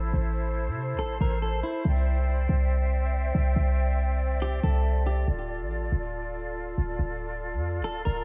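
A deep, boomy 808-style bass sits up front in this ethereal, melancholic hip hop piece in an atmospheric cloud-rap style, its sine tone carrying a noise layer and a fast attack with a mellow, decaying tail. A breathy large flute ensemble with vibrato and a crisp attack holds sustained chords at 140 BPM in a half-time feel, moving from Am to Cadd9 to Dm in D minor. A clean, compressed, fingered electric guitar, passed through a low-pass filter and digital delay, adds brief melodic phrases at 1.0, 4.4 and 7.8 seconds within a small room ambience, in this excerpt cut from a longer piece.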